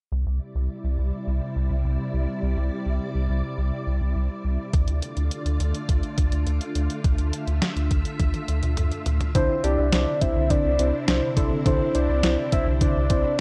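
A rubbery, hollow square-wave bass sits up front from 0.1 seconds, bouncing between low notes in this nostalgic, upbeat synth-pop passage in C major at 104 BPM in a straight 4/4. Beneath it, a silky vintage string machine holds soft sustained chords with a slow attack and ensemble chorus, moving from Cadd9 to Dm and back. At 4.7 seconds a detuned 8-bit digital drum machine joins with a thumpy kick, medium-tuned snare, hi-hat and toms, closing the opening stretch with a drum fill. From 9.3 seconds a new section brings a round, octave-layered lead melody with vibrato, chorus and phaser, along with muted, felt-like synth keys and a warbling, dusty pluck playing arpeggios through analog delay in the background. The mix is dry and gritty, with the character of cassette tape, and the recording is cut from a longer piece.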